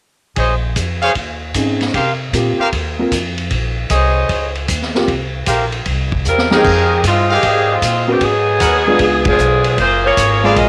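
Big band swing jazz with a brassy, dramatic mood, this short excerpt opens on a bright, up-front trumpet section punching out stabs over an upright bass and a vintage drum kit, all entering together at 0.4 seconds. The bass is woody and pizzicato, while the drums sit mid-forward with dark cymbals, a high-tuned snare and a tight kick, their sound saturated and gritty with a rolled-off top. An upright piano joins as accompaniment at 1.6 seconds, intimate and slightly detuned, with audible action noise and long sustain. As a drum fill rolls in at 6.3 seconds, a tight saxophone section takes the melody, loudest in the mix and carrying vintage vibrato as the harmony moves to new chords, with a band accent landing at 9.2 seconds. The horns, piano and drums carry a cassette-tape character, and the whole band sits in a small room with light reverb, like a home recording.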